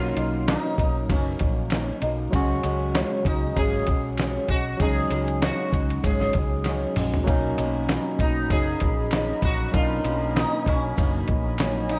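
A lightly swung 4/4 groove from a gritty, compressed sampler-style drum kit with a thumpy kick sits up front alongside a round, foam-muted electric bass, a barky tine electric piano, a dark fingerpicked flamenco guitar with finger squeak and warbly chorus, and a mellow, buzzing sitar melody with shimmering sympathetic strings and tape echo, as a drum fill at 6.7 s leads to a detuned, lo-fi tape-like pad entering at 8.0 s, all giving this sunny, nostalgic bedroom-pop excerpt a worn cassette haze.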